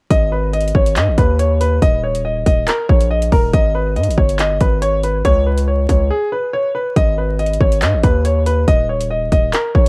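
Drill hip hop at 140 BPM with a half-time feel in G# harmonic minor, cold and menacing from the first beat. A clear concert grand piano carries the melody over a heavy, saturated 808-style bass with distortion and a fast attack, while an electronic drill kit of hard-clipped kick, metallic hi-hats and handclaps sits up front, with a brief break between 6.1 and 7.0 seconds. The dry sound carries the character of a home cassette recording and vinyl crackle, as this short cut from a longer piece moves through chords such as G#mmaj7.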